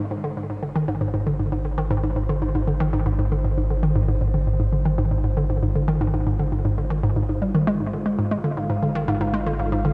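A dark production bathed in a moderate plate reverb frames this cosmic, expansive slice of sequencer-driven ambient space music in straight 4/4. Up front, a hollow, bouncy square-wave pluck with a detuned noise layer plays a low riff through chorus, analog delay and shimmer reverb, while a round, deep triangle-and-sine bass sustains a single low note beneath it. In the background, a vintage, resonant sawtooth pad fades in with evolving, warbling sustained chords, dressed in chorus and shimmer reverb, across the full 9.9 seconds.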